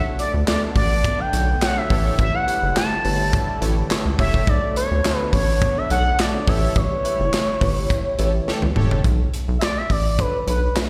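Early-eighties boogie funk at 105 BPM in B minor, danceable and funky, this short cut sets a smooth, expressive sawtooth synth lead with chorus and echoes up front over a rubbery, hollow square bass, an acoustic drum kit with a punchy kick, handclaps and toms, a worn, slightly out-of-tune tine electric piano with phaser, a lush detuned unison pad and bold, nasal analog synth brass entering at 1.3 seconds, all moving between Bm9 and A7 in a live venue sound with recital hall reverb, until a drum fill at 8.5 seconds opens into a synth lead solo at 9.0 seconds.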